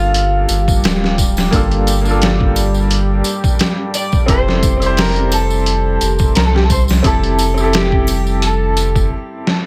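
A gritty, sampler-style drum kit sits up front in this dark, brooding trip hop excerpt, its pitched-down, compressed sound pairing a thumpy kick with a medium-tuned snare and hi-hat, all carrying a tape-colored, small-room grit over a lightly swung groove. Beneath it, a round sine sub bass with tube saturation holds the low end, deep and mellow and also placed up front. A bright, woody upright piano plays accompaniment with tremolo and tape echo, its audible action noise lending an intimate, polished presence, while a moody, detuned sawtooth pad with ring modulation and wave-folding breathes sustained chords through chorus and its own reverb. Over this, a dark, slightly broken-up electric guitar picks the melody through analog chorus and tape echo, and a close, acoustic tambourine and triangle add faint sparkle. The harmony moves from a minor seventh chord to a major seventh at 4.3 seconds, and most parts stop at 9.1 seconds, leaving a drum fill at 9.5 seconds as the piano rings out to 9.7 seconds.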